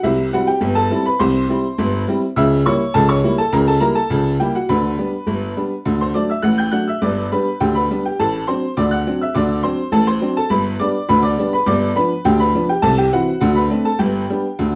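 A jangly, metallic tack piano plays alone from start to finish, sitting up front with a boxy, vintage edge and covering a range from G1 to G6 in this lively, cheerful ragtime piece at 103 BPM in a straight 2/4. In G major, the harmony moves from C through a C#dim7 to G/D and D, then through D7 and G7 before closing on G at 14.0 seconds. A short, wet studio reverb places the sound further back in the room, and the 14.8-second excerpt is cut from a longer piece.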